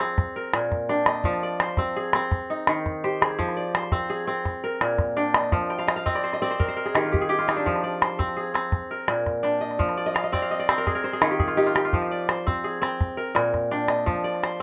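A ringing, crisp fingerpicked kora spins flowing, reflective arpeggios in F dorian over a small, up-front calabash in this West African traditional piece at 112 BPM in a straight 12/8, with kora fills at 5.7 and 10.0 seconds, moderate studio reverb and a rough home-demo mix in a short cut from a longer performance.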